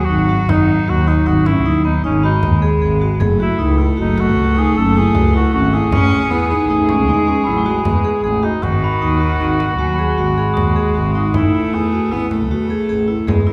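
Moving in an uneven 7/4 with a straight feel, this urgent, hypnotic contemporary chamber piece sets a mellow, smooth-topped cor anglais melody over a biting, nasal bowed cello second line, a focused, up-front bowed double bass, dark ringing vibraphone arpeggios and a small, dry frame drum in the background, while a bell-like glockenspiel first glints faintly at 2.2 seconds, all within the resonant wash of a recital hall in this section lifted from a longer work.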